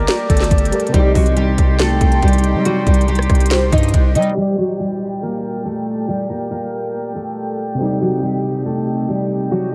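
A half-time trap groove at 140 BPM in G minor opens this dark, melancholic cut, with a knocking kick, sharp snare, crisp hats and rim clicks sitting up front over a heavy, saturated 808 bass, while a hollow, woody synth lead drifts through chorus and ambient delay. A bright, full-bodied fingerpicked steel-string guitar carries the melody with audible finger squeak, supported by a worn, slightly out-of-tune tine electric piano with light overdrive and smooth sustained woodwind chords with gentle vibrato. At 4.4 seconds the drums, bass and synth lead drop out, and a filter sweep runs beneath the guitar, piano and woodwinds in a dreamy, reverb-soaked mix that moves between Gm and Cm.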